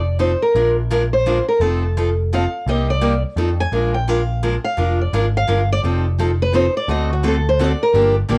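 Jazz manouche in a charming, playful waltz-time swing, this short cut from a longer piece puts an old ladder-braced acoustic guitar up front on the melody, its woody, boxy tone carrying the character of old strings, over a round, punchy, amped electric bass. A bright parlour steel-string guitar with fresh strings and audible finger squeak supplies the accompaniment from 0.2 seconds, joined at 5.8 seconds by a concert steel-string guitar sitting in the background. Light reverb and the worn, warbling pitch drift of old cassette tape give the recording a homespun feel.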